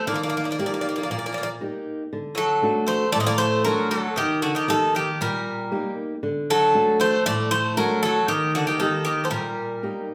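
A metallic, double-strung bouzouki carries the melody up front, joined by a second, brighter bouzouki on a lower line, in this brooding, bittersweet slice of Greek folk at 117 BPM in 4/4 with a straight feel, set in D phrygian dominant. A fingerpicked steel-string acoustic guitar with dark, woody old strings supplies the accompaniment, entering at 0.1 seconds as the harmony sways between Eb and D. The trio plays live together in one room, wrapped in a generous large-studio reverb.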